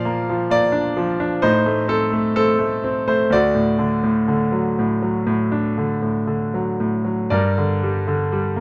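A bright grand piano plays alone in this dark, melancholic classical fragment, its brilliant, natural tone sitting up front and close in a dry, detailed sound as it moves through a lyrical rubato line in 4/4 over a harmonic path from Bb through Adim and D to settle on Gm at 7.3 seconds.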